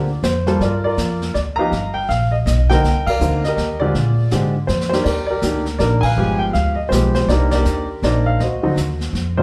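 Heard from further back in a reverberant studio room with lossy compression artefacts, this relaxed jazz piano trio excerpt swings in 3/4 at 162 BPM in G minor, with a woody, up-front upright piano carrying the melody through plate reverb over pizzicato upright bass on steel strings, while a distant vintage brush drum kit with dark cymbals and a rolled-off top enters at 0.2 s, adds a brief fill midway and joins band accents at 3.0 and 6.0 s.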